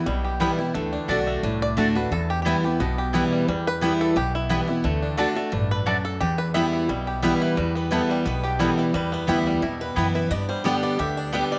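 A twangy fingerpicked banjo with tape echo leads a driving, rustic bluegrass clip in E minor at 176 BPM, taking a solo until 7.6 s over a full-bodied, up-front picked dreadnought guitar, a growly, thumpy pizzicato upright bass and woody mandolin stabs in the background, while a bright, boxy swing-style picked guitar with tape echo joins the melody at 7.2 s, all in a moderate plate reverb.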